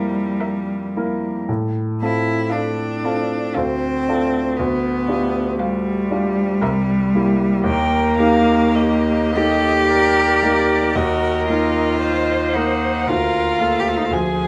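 Classical chamber music: a slow, tender romantic movement for piano quartet in three-beat time, unfolding with flexible rubato in a passage cut from a longer piece. A smooth, even violin carries the melody with vibrato from a distant place, and a focused viola adds bowed accompaniment behind it, while a rich, up-front cello sings a second line close by. A clear, open baby grand with long sustain supports them, and moderate reverb from a large studio gives the ensemble a spacious blend as the harmony moves through diminished, minor and seventh chords.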